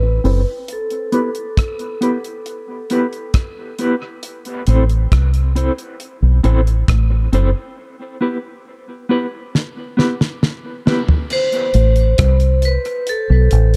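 Set in a dark production with light reverb, this dub reggae passage is cut from a longer piece and has a deep, hypnotic mood. A round, foam-muted fingered bass sits up front as the loudest part and holds the low end throughout. A damped 70s kit comes in at 0.2 seconds, with a fat snare and tight kick alongside hi-hat, rim click, toms and crash cymbal. A mellow, clean electric guitar plays accompaniment through tremolo, a low-pass filter and dub echo until 11.0 seconds. A vibraphone struck with hard mallets adds metallic, ringing melody with slow motor vibrato in a boxy small room, also filtered and echoed; it plays at the start and returns at 11.3 seconds. A filter sweep runs across the opening section, two breaks occur along the way, and a drum fill leads into the closing section, while the harmony moves between Am and Em.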